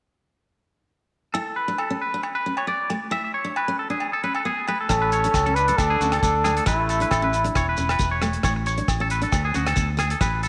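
A lightly swung sixteenth-note groove at 135 BPM in 4/4 drives this sunny highlife guitar band passage in A major, cut from a longer piece. From 1.3 seconds a bright, twangy electric guitar plays up-front arpeggios through tape echo, over a full-bodied picked steel-string acoustic guitar accompaniment and ringing, close agogo bells. At 4.9 seconds the band fills out with a round fingered electric bass, a damped 70s drum kit with tight kick, hi-hat, rim click and a dark, rolled-off top, and grainy maracas in the background. A cup-muted trumpet carries a veiled, soft-attacked jazz melody up front with light vibrato until 8.2 seconds, while a clear, punchy trumpet with scooped notes plays a second line behind it. The chords move mostly between A and D, touching on Amaj9 and E5, and a moderate echo chamber reverb lends the band a roomy, warm glow.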